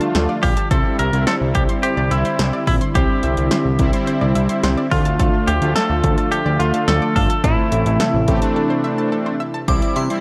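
A punchy analog drum machine drives a straight 4/4 pulse of kick, snare and hi-hat, sitting up front with a tape-warm tone, while a fat, saturated sawtooth bass holds the low end just as close. This melancholic, cool synth-pop passage, cut from a longer piece, moves through Dm, Cadd9 and Am, with a bold, brassy synth part carrying the accompaniment and a swirling, phased pad breathing slow, airy sustained chords in the background. An analog pluck spins round, bright arpeggios higher up, softened by chorus and tape echo. A clean, twangy electric guitar recorded direct plays the melody from 0.4 to 9.1 seconds, its picked notes trailed by echo and shimmer reverb. After a short break, a glassy FM bell rings out a crystalline second line at 9.7 seconds, all within a dark production with light reverb.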